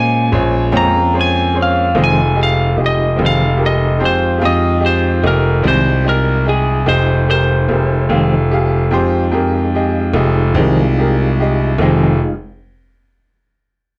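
Slow blues in F minor at 49 BPM in a straight 12/8, this mournful, brooding excerpt is cut from a longer piece and sits in a dark, warm production with a moderate club ambience. A lightly driven lead guitar carries the melody up front, its dark, slightly broken-up, picked tone compressed as it solos from the start until 9.7 seconds. Beneath it, a bright concert grand piano plays accompaniment up front with a brilliant, open sound and long sustain, while a second piano part holds down the bass in the background with deep, natural low notes. A tonewheel organ sustains smooth, clean chords in the background, colored by chorus vibrato, key click and a slow rotary speaker. A semi-hollow electric guitar enters at 0.7 seconds with fingered, hollow-body accompaniment treated with tremolo. The harmony moves from Bbm7 to Fm7 at 2.0 seconds.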